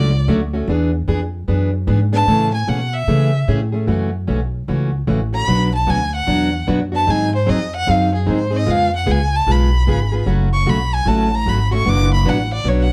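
A clear, focused violin carries the melody from the very start, bowed by a single player with vibrato and set close and up front in a touch of plate reverb. This is a short cut of swinging, charming acoustic string swing in the jazz manouche manner, moving with a lilting swung eighth-note feel. Beneath the solo, a picked steel-string parlour guitar, plugged in yet acoustic and warm, supplies the accompaniment. An upright bass with gut strings plays pizzicato, giving a woody, thumpy low end that sits prominently in the mix. The harmony shifts into a minor-key passage around 3.9 s, with chords such as F#m7, G#7 and C#7 leading toward a closing Bm/F#. The production is dark and warm, held in a moderate studio room.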